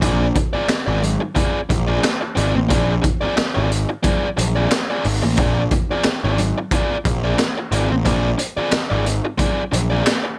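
An energetic, playful funk groove starts at once, with a biting overdriven guitar, a fuzz-toned picked electric bass, a raw garage drum kit and congas all sounding together from 0.0 s. The tempo sits at 90 BPM in 4/4 with a light 16th-note swing, in Bb mixolydian over a single Bb9 chord. Up front, the picked guitar plays accompaniment between C4 and D5, while the round, overdriven bass holds low between Ab1 and Bb1. The drums sound gritty and saturated in a small room, with a punchy kick, a high-tuned snare, hi-hat and handclaps, and their top end is rolled off. Further back, high-tuned congas with a thick skin add percussion from a live room. A light reverb sits over the mix, and the parts stop around 10 seconds, since this is a short cut from a longer piece.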